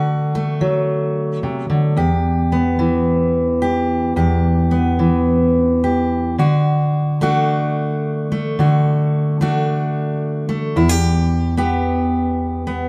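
Folk fingerstyle in a haunting, wistful mood: a solo fingerpicked jumbo steel-string acoustic guitar, full-bodied and up front with audible finger squeak, moves between D and Em chords in a straight 4/4 within a moderate large studio reverb, the passage shifting to a second section at 6.4 seconds in this fragment cut from a longer piece.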